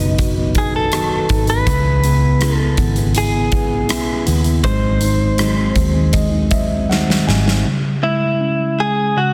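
A straight 4/4 pulse at 81 BPM carries this heartbroken, emotional pop ballad in C# minor, a short cut from a longer piece. A huge arena drum kit sits up front with a punchy kick, a medium-tuned snare touched by soft clipping, hi-hat and rim click, and plays a fill from 6.9 to 7.7 seconds before dropping out. Underneath, a vintage muted fingered electric bass gives a dark, round, foam-muted low end, while a fingerpicked jumbo steel-string acoustic guitar with fresh strings adds full-bodied arpeggios in the background. A bright tine electric piano, heard through its built-in speakers, supplies the accompaniment and a fill from 5.4 to 7.7 seconds, moving through B, C#m7 and G#7 before settling on C#m. Over it all, a clean, compressed electric guitar recorded direct carries the picked melody up front, and with the electric piano it continues alone to the end at 9.3 seconds. Light studio reverb and a dense, heavily limited modern master give the ballad a polished, emotional weight.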